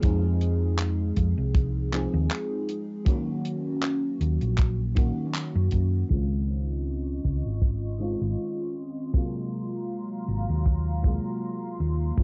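This nostalgic, woozy vaporwave fragment at 79 BPM in Db major opens with a dreamy FM electric piano, drenched in lush chorus and analog delay, over a round, dark hollow-body bass, a tight, up-front kick and a dry, polished funk kit with hi-hat, handclaps and crash. After a band accent near 5.3 seconds, the kit drops out at 6.3 seconds as a filter sweep moves through the second half and the chords shift from Fm7 and Ebm7 to Dbmaj9 and Ab13. A thick, detuned sawtooth unison pad with a slow attack enters at 7.0 seconds, all under a muffled, lightly reverberant home-cassette sound.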